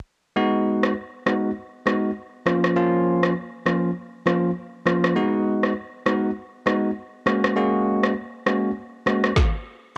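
A cassette-tape home recording bathed in moderate spring reverb carries this sultry, smooth afrobeats fragment with a swung sixteenth-note feel, as a bright, bell-like, barky tine electric piano enters at 0.4 s with clean, direct G#m7, A#m and F#add9 chords, joined at 0.8 s by an up-front, layered electronic deep house kit of punchy kick, woody snare and rim click re-recorded in a small room.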